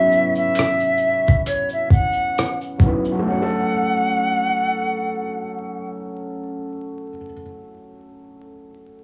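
A silver concert flute and a felt-muted upright piano open this nostalgic, hazy lo-fi hip hop excerpt together, cut from a longer piece in F# minor at a slow 67 BPM in 4/4 with a lazy sixteenth-note swing. The flute carries the melody in a pure, metallic voice with vibrato and a soft attack, softened by a low-pass filter, cassette tape colour and an analog delay. Beneath it the piano sits up front with a mellow, intimate tone and audible action noise, also filtered and tape-treated, moving from F#9sus4 to F#m. A gritty, compressed sampler-style kit of hi-hat, thumpy kick, rim click and shaker sounds re-recorded in a small room, and it drops out at 3.2 seconds. The flute stops at 5.9 seconds, leaving the piano alone until 9.0 seconds, all wrapped in vinyl crackle and the close ambience of a home cassette recording.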